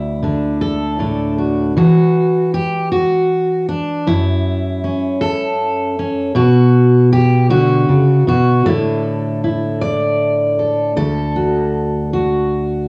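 Folk for solo fingerpicked steel-string acoustic guitar, a gentle, hopeful excerpt in D major at an unhurried 52 BPM in 6/8, the jumbo guitar sitting up front with a dark, full-bodied tone and fresh strings, colored by cassette tape and a moderate studio reverb, as it moves from Dadd9 through F#m7, Bmadd9 and Asus4 before settling on D at 11.0 seconds.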